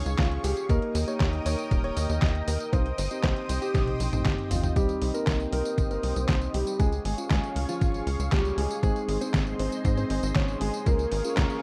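A dark, vinyl-crackled production in moderate plate reverb carries this melodramatic, danceable italo disco excerpt at 118 BPM, where a thumpy electronic kick and a detuned 8-bit drum machine of handclaps, hi-hat, snare, tambourine and toms play alongside a punchy sawtooth sequencer bass, mellow tine electric piano stabs with analog chorus, and a lush, thick unison pad with chorus and phaser sustaining chords over Db, Eb, Cm and Ab, while a warm grand piano melody with delay leads on top, a drum fill rolls in at 3.7 seconds, and a filter sweep moves across the pad from 4.8 seconds.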